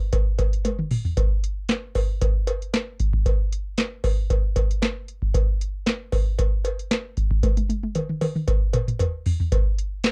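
A booming analog drum machine opens the clip, playing a straight, danceable funk groove at 115 BPM in 4/4 with kick drum, snare, hi-hat, handclaps and toms, while a cowbell sounds alongside from the very start. The machine sits up front, its deep kick and tonal snare giving the beat its punch, and its metallic hats adding bite, with a short room touching only the snare, clap and hats. The acoustic cowbell rides lower in the mix, its metallic tone carrying a small-room ambience of its own. A quick drum fill arrives between 0.6 and 1.2 seconds, and a longer one runs from 7.4 to 9.5 seconds. The dry, close sound recalls a 1970s studio session, and the clip is cut from a longer piece.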